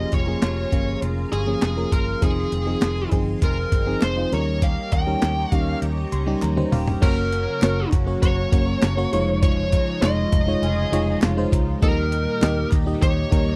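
A dry, close-miked recording with a 1970s studio feel carries this nostalgic, dramatic 1980s-style pop excerpt at 100 BPM, where a smooth overdriven lead guitar with slapback echo sings the melody over glassy, bell-like FM electric piano chords, a shimmering sawtooth string machine, a twangy clean guitar riff set back in the mix, a round, punchy muted bass, a gritty, compressed breakbeat drum kit with a thumpy kick and tambourine, and very quiet crisp handclaps, with an electric piano fill at 5.8 s and a drum fill at 6.4 s, and a soft, intimate bowed violin section briefly appearing at 10.6 s.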